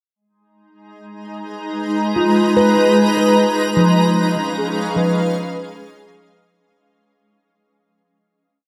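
A straight, unhurried 4/4 pulse underlies this brief, complete ambient piece, reflective and melancholic in mood. A shimmering, ethereal pad fades in and sounds from 1.3 seconds with slowly shifting sustained chords moving from G#m to C#13. Its sine and unison voices carry an octave-up shimmer and a granular texture, and they sit bright and up front, thickened by chorus and their own reverb. At 2.2 seconds a nitrided-steel handpan joins with ringing, meditative arpeggios in sharp finger strokes, played as three slow loops of unequal length drifting against each other through an analog delay. From 4.6 seconds a velvety synth lead, blending sawtooth and triangle with a fast attack, vibrato and chorus, sings a smooth, free melody lower in the mix. The whole mix is soaked in a huge, dreamy reverb with a very long decay, and the piece fades out across its second half.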